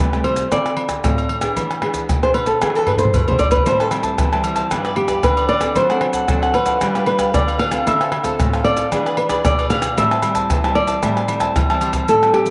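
A fingerpicked flamenco guitar melody with audible finger squeak opens this lively, bittersweet samba-and-choro passage over a small, warm nylon-string guitar that carries its own solo, while an up-front percussion section of maracas, pandeiro, tamborim, agogo bells and tight surdo, played with hard hands in a live room, drives a drum fill at 2.6 seconds before a crisp picked cavaquinho joins at 3.7 seconds, all bathed in wet spring reverb with a soft, rolled-off top.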